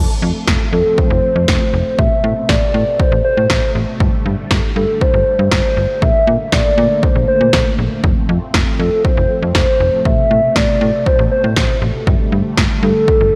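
A punchy analog drum machine sets a straight, driving 4/4 pulse from 0.5 seconds, its kick and snare sitting up front with a tape-warm electronic snap. Underneath, a slap-like FM bass with a metallic, fast-decaying attack plays from the very start, while a string machine voiced as cellos holds soft, sustained sawtooth chords in the background, thickened by a sub octave and coloured by phaser and ensemble chorus. At 0.7 seconds a hollow, woody clarinet-like synth lead takes the melody up front, a dark square-and-triangle tone with a noise layer, vibrato and chorus. The chords cycle through F, Amadd9, Gsus2 and Bbmaj7, giving this synth-pop cut a cool, open colour. A lush hall reverb spreads the mix into a big arena-sized sound.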